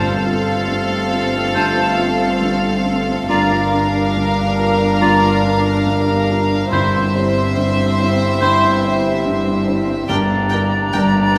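Moving and full of longing, this cinematic excerpt unfolds at 70 BPM in 4/4 with a rubato feel, its chords drifting from F/G through Bb/G and C/G before settling on Gm. Two violin sections carry the melody and a second line, their sul tasto bowing soft-edged and floating, while an airy flute, a clear oboe and a distant, very quiet clarinet add their own lines above and within the strings. Beneath them a dark, woody viola section and a felt-muted upright piano, intimate and vintage with audible action noise, supply background accompaniment, and a mellow French horn section holds sustained chords from afar. Cellos and double basses anchor the bass on a pure, rich G, and soft-mallet timpani sound roundly at the opening until 1.1 seconds, then return from 6.7 seconds. A wet church reverb with a 3.2-second decay wraps the ensemble in a spacious hall ambience.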